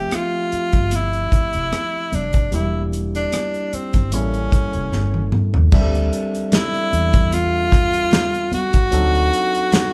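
A breathy, whispered tenor saxophone carries an intimate melody over a barky, lightly overdriven tine electric piano in this silky, cinematic 1970s-style soul passage in D minor at 75 BPM with a gentle sixteenth-note swing, joined by a round, foam-muted fingered electric bass, an up-front dry soul drum kit with dark cymbals and a tight kick that plays a fill at 4.9 seconds, very quiet damped high-tuned congas, and a barely audible crisp group handclap from 6.5 seconds, all heard as a live band in a large studio with moderate reverb and some lossy compression artefacts as lush chords move from Fmaj7 through A7b9 to Dm11.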